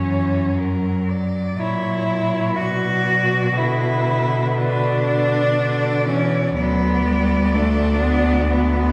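Unhurried and rubato at 60 BPM in 4/4, this short, yearning and solemn classical excerpt in B minor sets four bowed cellos in a wet, distant scoring-stage reverb: a focused solo cello sings the high melody with vibrato, a smooth second cello and a close, even accompanying cello fill the middle, and a deep bass cello adds expressive portamento, all playing together throughout the 8.9 seconds over F#7 resolving to Bm and then Bm/D.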